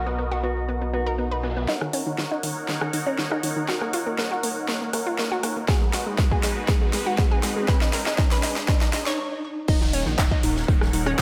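A lush hall reverb and steady sidechain pumping shape this driving, bittersweet progressive house passage in Eb minor at 120 BPM, where a filtered supersaw swell holds evolving chords over a dark, detuned saw bass rumbling in the background, while a round, chorused analog pluck with delay spins arpeggios throughout. A very quiet, airy street-band kit and a brief, clean electric guitar note with spring reverb and dub echo open the track. At 1.7 s a big-room dance kit with a huge snare, metallic hats and handclaps begins a build-up, with a filter sweep on the pluck, a background riser, and a punchy, up-front electronic kick arriving at 5.7 s, before a short stop gives way to the drop at 9.7 s.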